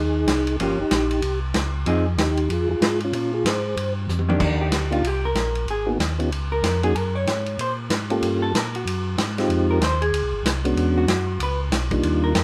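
Swinging in four with a greasy, bluesy lilt, this soul jazz organ trio fragment sets a soft, flute-like percussive tonewheel organ melody against a round, lightly overdriven tonewheel organ bass line, both turning through a slow rotary speaker with chorus vibrato, while an up-front vintage drum kit with dark cymbals and a punchy kick drives underneath, a drum fill at 4.1 seconds hands over to a clean, dark hollow-body jazz guitar that moves from accompaniment into a picked solo from 4.4 seconds, and light reverb surrounds the whole trio.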